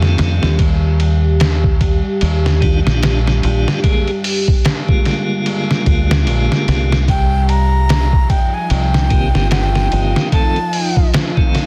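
Trip hop with a dark, melancholic mood, this short cut from a longer piece moves with a swung groove in 4/4 over minor-key seventh and ninth chords. An up-front, sampler-style drum kit sounds pitched down and muffled, with a thumpy kick, medium-tuned snare, hi-hat and ride cymbal carrying a tape-warmed, compressed weight. Beside it sits a round, dark fingered electric bass, also up front, which drops out at 10.1 seconds. A piping, scooped tonewheel organ with key click, light overdrive, a stopped rotary speaker, tremolo and tape echo plays accompaniment over a deep, moody sawtooth pad whose detuned unison, sub octave and long release are softened by chorus and reverb. At 7.1 seconds a breathy, reedy concert flute enters with a crisp, close-miked melody, bright with vibrato and trailed by tape echo, and at 8.2 seconds a very quiet reversed, granular texture swells in dreamily beneath it. 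The digital ambience and dense, heavily limited modern master keep the whole mix loud and dense.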